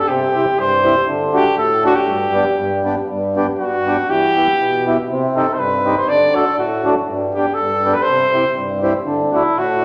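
A clear, classical-style trumpet carries the solo melody in this jolly, bouncy alpine dance band tune in G major, moving at 121 BPM in a lightly swung 2/4. A reedy, full-bodied accordion with dry tuning and a boxy small-room character supplies the accompaniment beneath it, with both parts up front while a recital hall reverb places the pair further back in a roomy space. The harmony passes through C, D, G and Em, with a brief turn to C minor at 5.1 seconds, across two statements of the same section in this portion of a longer piece.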